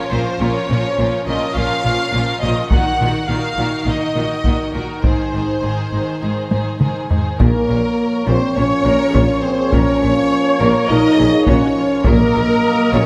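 Bowed violins carry a smooth, vibrato-rich melody over a lush second violin line, expressive violas with portamento, mellow French horn chords, and a distant cello and woody double bass foundation, setting a heroic, relentless tone for this epic cinematic orchestral passage cut from a longer piece. Close, dry taiko drums struck with heavy sticks enter at 2.7 seconds and play a fill just before 7.4 seconds, when tight trombone chords, vintage-toned trumpet stabs and a punchy, roomy tuba join in the background. A timpani note arrives at 12.1 seconds, and the orchestra is heard in a moderate scoring-stage reverb.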